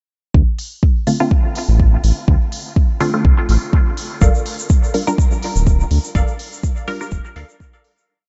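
A round, dark analog bass pumps beneath an up-front four-on-the-floor kick in this hazy, deep dub techno piece at 124 BPM in D minor, where smooth open hi-hats, muted, resonant filtered dub chord stabs with phaser and echo under a filter sweep, and crisp digital wavetable stabs and a grainy hand-played tube shaker arriving at 4.2 seconds move from Dm7 to Gm7 before a fade-out that begins at 5.5 seconds.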